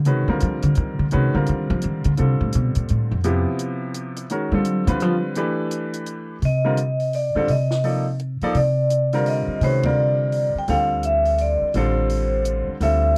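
An up-front, woody upright bass with steel strings takes a pizzicato solo at the start of this intense, hypnotic modal jazz cut in C dorian. It swings in 3/4 at 169 BPM over Cm9 and Dm9 chords, with a clear, intimate baby grand piano whose action noise can be heard, and a quieter compact cocktail kit with dark cymbals, a high-tuned snare and a tight kick. At 6.5 seconds a ringing, metallic vibraphone played with medium mallets brings in the melody, with a slow motor vibrato and a vintage, band-limited tone, and the band hits an accent at 9.8 seconds, all in a dry, close 1970s-style studio sound.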